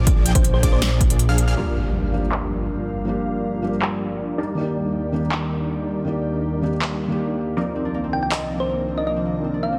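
Lush and emotional, this future bass excerpt moves at 160 BPM in 4/4 with a half-time feel, cut from a longer piece. It opens on a drop where a punchy, up-front electronic kick and a fat, nasal analog bass pumping against the sidechain sit under a background unison pluck playing arpeggios and a detuned supersaw stab riff, both pumping against the sidechain and trailed by dub echo. A round, tine-like thumb-piano-style synth pluck offers a brief melodic figure early on and returns at 8.1 seconds, while the big-room dance kit supplies a punchy snare, handclaps and crisp hi-hats that are gradually filtered through a long sweep. At 1.6 seconds an electronic impact lands as the chords shift, and a breathy, slow-blooming pad with chorus settles in beneath a soft, intimate felt-muted upright piano whose audible action noise gives it a vintage character. Near the close, a ringing, fingerpicked concert harp adds arpeggios, capping a progression that moves from Gm7 through Ebmaj7 to Cm11, all within a light reverb and a dense, heavily limited modern master.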